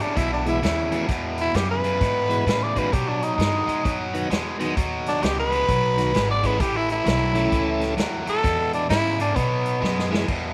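Heard through moderate spring reverb in a small room, this swaggering, soulful electric blues shuffle in E major swings at 130 BPM as a raspy, growling tenor saxophone solos up front over a biting overdriven guitar riff, woody pizzicato upright bass and a punchy big-band drum kit, with a piping tonewheel organ through a rotary speaker entering at 0.5 seconds and a drum fill arriving at 9.8 seconds.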